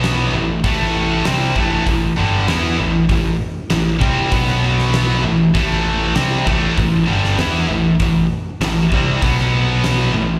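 Driving and heavy, this hard rock excerpt at 98 BPM in A dorian pairs two distorted, up-front high-gain guitars, one scooped and both carrying slapback echo, riffing over Am and B5 with a growly, punchy picked electric bass and a huge arena drum kit whose fat snare and pumping room sound stop at 10.0 s, the performance heard as a live gig through the venue's PA with light club reverb.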